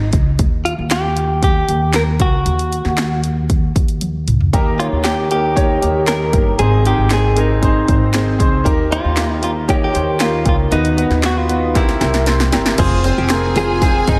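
A clear, natural grand piano with analog chorus enters at 4.5 seconds to drive this uplifting piano-driven pop excerpt at 116 BPM in Eb mixolydian, over a punchy, layered electronic house kit, a woody pizzicato upright bass and a compressed, clean direct-recorded electric guitar melody bathed in spring reverb and delay, before a bowed violin section with vibrato and a full-bodied fingerpicked acoustic guitar riff join at 12.8 seconds in a dreamy mix soaked in hall reverb.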